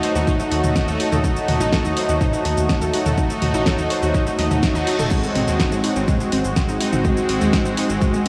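A dreamy, reverb-soaked mix opens this cinematic, hypnotic melodic techno excerpt at 124 BPM, where a punchy, up-front electronic kick and a house kit with a punchy snare, bright hats, shaker, toms and crash play alongside a round, deep analog bass, while background analog pluck arpeggios with tape echo, bold brassy pad stabs, a moody dark ambient pad and an ethereal, phased airy pad all pump with sidechain over chords moving from D#dim to G#7 at 5.1 seconds, just after a very quiet reverse cymbal at 4.6 seconds.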